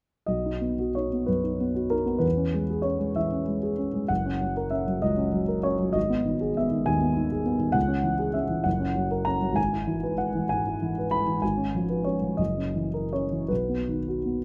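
A close, detailed recording with light reverb places a clear concert grand piano up front, its worn yet natural tone carrying a deep bass and a short sustain. This romantic character piece in B major moves in a lyrical 6/8 with rubato, its dotted-quarter pulse ranging from 52 to 70 BPM, in a brief passage cut from a longer work. The harmony travels through C#m, F# and G#m, then gathers through C#7/G# at 11.4 seconds and F#7 at 12.4 seconds before settling back on B at 13.5 seconds.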